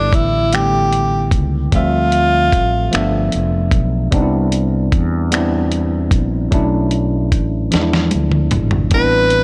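Warm and sensual, this slow six-eight R&B groove moves at 50 BPM in G major, cut from a longer piece and wrapped in a dark, digital ambience. A clear tenor saxophone carries the melody with a soft attack and scooped notes in a jazz solo style, playing from the start to 3.3 seconds and returning briefly at 8.9 seconds. Beneath it, a worn, slightly out-of-tune tine electric piano with light overdrive plays through its built-in speakers, moving through rich chords such as G69, Dm11, Cmaj7 and E7b9. A punchy fretless electric bass, given a lush chorus, holds down the low end throughout. The dusty sampler-style drum kit enters at 0.1 seconds with finger snaps, hi-hat, a thumpy kick, a fat snare and toms, its gritty, compressed sound leading into a drum fill from 7.7 to 8.9 seconds.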